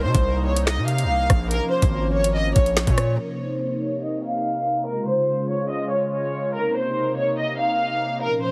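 Dark, ominous drill hip hop in C phrygian at 143 BPM with a half-time feel, where a close, reedy violin section with light vibrato and gut-string tone carries the melody over a detuned, airy sawtooth pad with chorus, while a saturated, distorted 808-style bass and a drum kit of knocking kick, woody snare, metallic hats, rim clicks and finger snaps drive the opening before dropping out by 3.2 seconds, when a filter sweep takes over until 8.5 seconds, the whole mix set in a heavily compressed, radio-like digital ambience.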